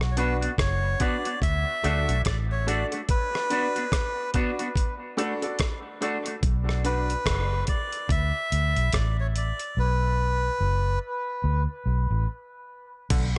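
The reedy, breathy melodica carries the melody up front, close-miked and full, trailing into dub echo from 0.1 until 11.0 seconds. This heavy, spacious dub reggae excerpt moves at 72 BPM in 4/4 with a swung sixteenth-note feel, cycling between B minor and D chords that thin to bare fifths in its second half. Underneath, a round, foam-muted electric bass and a dusty, compressed sampler-style drum kit with a thumpy kick, hi-hat, rim click and crash cymbal hold the low end close and gritty. A dark, clean guitar through an envelope filter, touched with subtle chorus and echo, and a brilliant baby grand piano playing stabs with long sustain fill the middle during the opening seconds before dropping away. Part of the band falls silent from 9.8 seconds, leading into a break at 12.3 seconds, and a faint overdriven, stringy clav slips in at the very end under light digital ambience.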